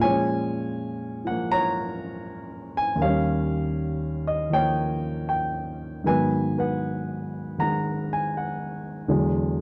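A grand piano plays alone and up front, its short-sustained notes spanning Eb2 to Bb5, in this cool, swinging solo jazz excerpt in Eb minor at 80 BPM, with a loose rubato 4/4 swing, tuning at A4 = 436 Hz, and harmony moving from Bbm7 through Eb7 and Abm7 to E9, all set in a dark, warm production with light reverb over 9.6 seconds.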